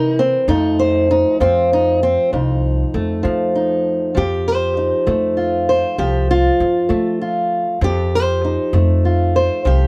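Acoustic country blues with a rollicking, swaggering mood at 66 BPM in 12/8, this short cut from a longer piece features an up-front, fingerpicked old ladder-braced acoustic guitar carrying the melody with a dark, boxy tone from old strings, over a thumpy pizzicato upright bass with woody gut strings, landing on an F7 chord at 0.5 seconds, all set in light reverb and tuned to A4 = 441 Hz.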